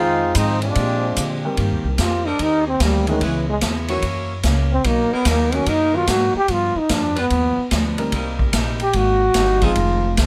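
Big band swing with a joyful lilt, this excerpt opens on a mellow trombone section over upright bass and picked acoustic guitar, with a drum kit of kick, snare, hi-hat and dark-toned ride cymbal joining at 0.3 seconds. From 2.0 seconds a breathy, up-front solo trombone carries the melody with light vibrato and scooped notes. It is backed by an intimate baby grand piano with audible action noise, woody pizzicato bass, the guitar sitting in the background, and an edgy saxophone section holding sustained chords, while the drums sound distant and roomy with a boomy kick in an otherwise dry mix.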